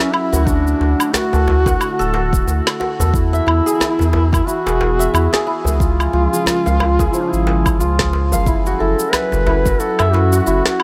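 Earthy and mystical, this organic downtempo excerpt moves at 90 BPM with a loose 16th-note swing, as a mellow, folk-style duduk sings the lead with vibrato and scooped notes, roughened by vintage 12-bit sampler grit and trailed by digital delay. Beneath it a warbling, lo-fi tape-like pad holds sustained chords with chorus and sidechain pumping, while a hammered santur rings out shimmering, delayed arpeggios over a D, E, C# and F#m7 progression. A round sub bass sits up front and pumps with the sidechain, a deep electronic kick arrives at 0.5 seconds, and a woody electronic snare with shaker and woodblock plays alongside a tight, cracking djembe, all in light reverb and studio ambience.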